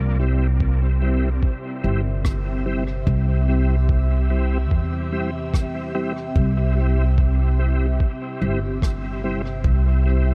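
A small room's reverb wraps this short ambient dub fragment, giving it a close, peaceful yet spacious air at a relaxed 73 BPM in 4/4, with a light swing on the sixteenths and a C mixolydian center resting on a C chord throughout. Up front, a woody pizzicato upright bass on steel strings holds the low end from the first moment, joined at 0.6 seconds by a muffled, thumpy electronic kick that is pitched down, compressed and overdriven. Beneath them, a soft, breathy pad of detuned sawtooth and triangle tones with a noise layer sustains chords through chorus and phaser, its slow attack and long release keeping the background hazy. A smooth, clean tonewheel organ plays stabs through a fast rotary speaker and chorus vibrato, trailing dub echoes behind each hit. Far back in the mix, a brushed rim click enters at 2.2 seconds, its own dub echo adding a faint ripple to the sparse groove.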